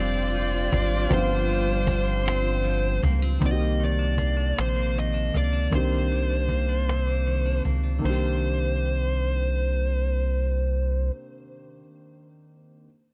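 Slow six-eight R&B in C minor at 52 BPM, sultry and yearning, this cut from a longer piece moves from a G7sus4 chord to Cm9 at 3.4 seconds. A fuzz-distorted lead guitar carries the melody over a clean electric guitar second line in the background, a natural grand piano accompaniment and a rubbery, dark square bass sitting up front, while a soft-handed cajon with snappy snares and vintage 12-bit sampler grit enters at 0.3 seconds. Bowed studio strings with vibrato hold intimate sustained chords, and a tight jazz-style horn section adds delayed stabs; both sit in the background, with the horns stopping at 3.0 seconds and the strings at 3.4 seconds, and the whole mix is set in a small room ambience.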